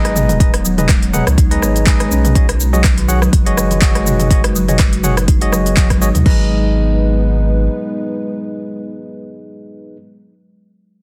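Spiritual and warm, this afro house cut from a longer piece moves at 123 BPM in G# minor, with a gentle 16th-note swing and a dense, heavily limited modern master. It opens in the thick of a drop, where a deep, layered electronic kick enters at 0.4 seconds beneath a deep house kit of smooth hats, handclaps, rim clicks, shaker, toms and crash cymbal. A round, sine-like sub bass with a fast attack pumps against the sidechain, while a woody, hollow-box kalimba rings out bright, close-miked arpeggios through digital delay. A barky, lightly overdriven tine electric piano played through a combo amp punctuates the groove with stabs, and a moody, detuned, wave-folded analog pad holds slow-attack chords in the background, moving from G#m to B6 and back. The drums fall away at 6.4 seconds and the kalimba at 6.5 seconds. The bass follows at 7.7 seconds, leaving the pad and piano to carry the closing stretch in a digital ambience.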